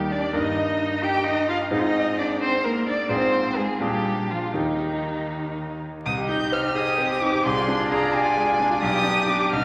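Heard through vinyl crackle and a wet scoring-stage reverb, this cut from a quick classical-period movement for piano quartet in 6/8 moves with a dramatic, urgent rubato at 78-88 BPM, turning from Eb major to C minor at 6.1 s. A bright, brilliant grand piano with a natural tone sits up front in the accompaniment, while a single warm violin carries the expressive bowed melody, smooth at the top and shaded with vibrato and portamento. A second, rich-toned violin and a warm, softly attacked cello add bowed second lines with vibrato and portamento of their own.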